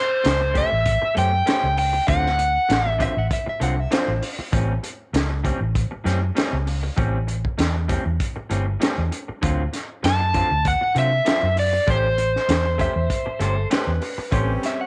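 A light reverb and the ambience of a small room give this short cut from a longer piece an intimate, laid-back character. It is a rollicking straight-eighth soul blues moving between A7#9 and D7#9 chords. A crunchy breakbeat kit of hi-hat, tight kick and high-tuned snare carries gritty vintage sampler texture and a rolled-off top. A dark, round, foam-muted fingered bass sits up front beside the drums, while an electric guitar through a small old amp plays lo-fi, slightly broken-up stabs throughout. The overdriven slide guitar, played with fingerpicks and touched by slapback echo, carries the melody at the start and again from 10.1 seconds. A clean, compressed guitar recorded direct adds a picked second line in brief passages, and a soft-attacked horn section with light vibrato and octave doubling holds sustained chords from 14.3 seconds to the end.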